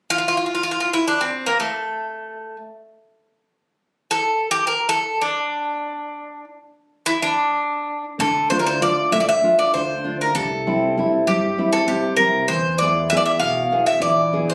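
A bright, metallic Greek bouzouki with double strings, some octave-doubled, carries a moody, bittersweet Greek folk melody alone until 8.2 seconds, when an up-front, full-bodied nylon-string guitar enters with fingerpicked accompaniment and audible finger squeak, and a woody, thumpy pizzicato upright bass sits in the background, all caught on a phone in the room with club reverb and compression in this fragment of a longer piece.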